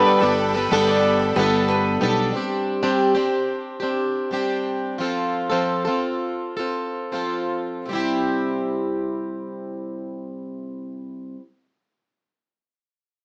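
Acoustic pop in C major at an easy-going, sunny 78-92 BPM, this short excerpt opens with the boxy, shimmering, octave-doubled twelve-string acoustic guitar up front, alongside a lush, bowed string section and woody mandolin arpeggios in the background over a direct fingered electric bass. From 2.3 s the guitar carries on by itself, slowing down until 7.9 s as the chords move from Gadd9 through Csus2 and F to C, all in a moderate studio reverb with a small-speaker sound.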